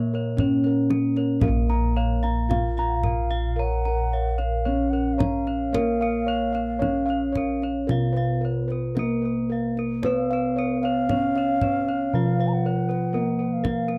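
In a steady, straight four-beat pulse, this stately, hypnotic Javanese gamelan passage, cut from a longer piece, sets a soft, airy bronze metallophone melody over round, beating bossed gongs that carry the bass, while a second set of gongs and a bright, horn-mallet metallophone ring out arpeggios higher up. A deep kendang drum enters at 0.4 seconds, and a dark, wooden-mallet metallophone accompaniment sits in the background, playing only at the opening and again from 10.0 seconds. At 2.9 seconds a pure, hollow bamboo bansuri joins with a tongued, vibrato second line, all captured in a dry, close 1970s-style studio sound with light reverb.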